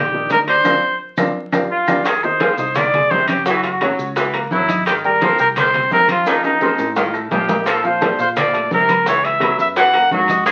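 Salsa with a danceable, fiery drive, where a clear, punchy trumpet carries the melody up front with scooped notes over a woody, slightly detuned upright piano, a round fingered electric bass, tight high-tuned bongos, ringing congas played with hard hands, metal-shelled timbales, woody claves and grainy maracas, while a bright saxophone section enters in the background at 2.0 seconds with a second line, a band accent and drum fill push into the new section at 2.1 seconds, and the whole excerpt sits in a wet room with the crackle of a very old 78 rpm record.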